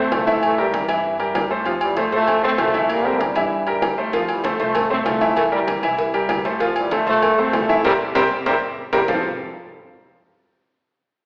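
Salsa with a joyful, sunny feel, this short cut from a longer piece puts a punchy trombone section up front, carrying the melody with light vibrato in a tight, pop-style blend. A clear grand piano sits just as present beside it, its intimate tone, long sustain and audible action noise filling in the accompaniment over alternating F and C7 chords. Beneath them, a woody, thumpy upright bass with gut strings plays pizzicato in the background. Low-tuned congas with a thick skin sit further back, while ringing metal-shell timbales and agogo bells sound close and dry. At 4.1 seconds, very quiet, high-tuned cowbell and bongos join with hard hands. Near the close the band hits an accent from 7.8 seconds, joined by a drum fill at 8.3 seconds, before landing on F5 at 9.1 seconds. The whole recording carries the wet reverb of a recital hall, heard through an AM radio sound.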